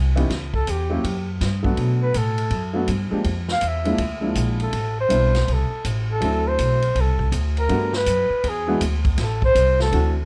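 Light reverb frames this swinging, sophisticated small-group swing and bop excerpt at 162 BPM, where an up-front mellow flugelhorn solos with vibrato and a soft attack over woody pizzicato upright bass, a boxy, slightly detuned upright piano accompanying through chords such as Gmaj9/F# and Bb7#11, and a rolled-off vintage drum kit with punchy kick, medium-tuned snare, hi-hat and ride cymbal.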